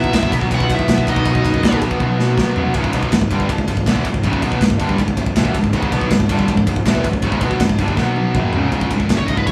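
A bright, high-gain lead guitar melody and a warm second lead line open this relentless, epic heavy metal piece at 160 BPM in C# minor, set over a riff shared by an overdriven guitar, a tight distorted guitar and a scooped, double-tracked guitar, along with a growly fuzz bass and an up-front acoustic kit with a tight kick, all captured as a band playing live in a small room, with drum fills at 2.0 and 8.0 s and the lead melody briefly returning at 9.2 s.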